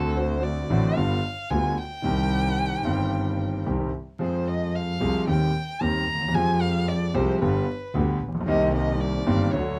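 A bowed violin carries the solo throughout this melancholic, sultry tango fragment, its tone smooth on top and shaped by vibrato and expressive portamento. Beneath it, an intimate, vintage-sounding concert grand sits up front with deep bass and audible action noise, while a close, soft-attacked double bass adds a rich, bowed line with its own vibrato and slides. The rubato feel at 112 BPM in C minor moves through dominant chords into minor harmonies, and light reverb and vinyl crackle give the sound an aged patina.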